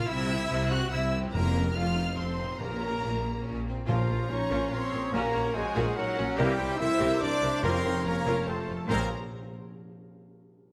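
Heroic adventure film score in a swashbuckling 3/4, with a lush, expressive violin melody over a second violin line, rich violas, a focused cello and double bass foundation, soft-attack trumpet stabs, very quiet ringing harp arpeggios and background timpani from 1.3 seconds, before a mellow French horn section, clear trombones, an airy flute, an oboe and a bright, very quiet clarinet join at 3.9 seconds, all set in a moderate scoring-stage reverb.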